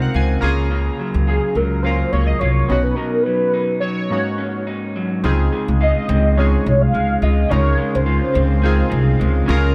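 A lightly swung sixteenth-note groove sets an unhurried, sunny feel in this laid-back bedroom-pop fragment, cut from a longer indie pop piece. An upright bass, plucked pizzicato, sits up front with a woody, growly tone, while a dark, slightly broken-up electric guitar through a small old amp picks accompaniment with lush chorus and a warbly pitch drift. Analog keys with a round, detuned character and ring-modulated edges open with a short fill and keep adding decaying support. Over them, a velvety, full-bodied synth lead carries the melody with vibrato, ensemble chorus and tape echo. After a break at 3.0 seconds, a thick, warbling vintage pad fades in softly at 5.2 seconds, holding sustained chords in the background under a light reverb.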